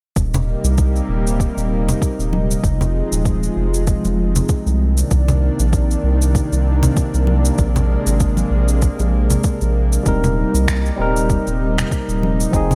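A lush, warbling unison pad with chorus opens this sunny sunset chillout excerpt alongside a round, deep analog bass, a soft electronic kick and electronic shaker with finger snaps, the drums given overdrive and studio reverb, while close, dry congas played with hard hands ride the swung sixteenth-note feel until a barky tine electric piano through a combo amp, touched with delay, steps up front at 10.0 s.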